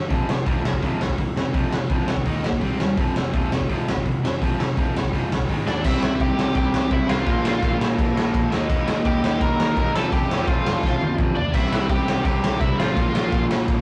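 A rough rehearsal-room recording with saturated character and a short room reverb carries this angry, urgent punk rock excerpt at 168 BPM in a straight 4/4. A biting overdriven guitar riff drives it, backed by a very quiet hollow-body guitar also playing a riff, a growling picked bass and an up-front, gritty garage drum kit with a punchy kick and medium-tuned snare that plays a fill at 10.8 s. At 5.7 s a bright lead guitar takes up the melody, and at 5.8 s a barely audible double-tracked guitar joins with a riff, as the chords move through F5, Eb5, C5 and Bb5.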